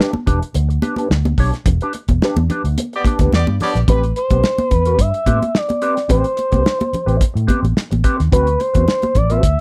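A straight 4/4 funk groove at 108 BPM opens this sly excerpt, carried by a cloth-damped, thuddy drum kit with a tight kick, medium-tuned snare and hi-hat, alongside a vintage muted fingered electric bass that sounds round, dark and punchy. A mellow electric guitar with wah plays accompaniment over Em7, while bright, high-tuned congas sit close and dry in the mix. A band accent runs from 1.7 to 3.9 seconds, and a clear, punchy horn section with light vibrato, tube saturation and slapback echo adds a brief second line around 2.9 seconds. At 3.9 seconds the harmony moves to Am9 and an expressive sawtooth synth lead takes the melody, smooth and sustained with vibrato, chorus and a moving notch, before the chords settle on D13 at 8.3 seconds. The sound is a dry, close 1970s-style studio recording with little reverb, the drums, bass and synth lead placed up front, and the clip is cut from a longer piece.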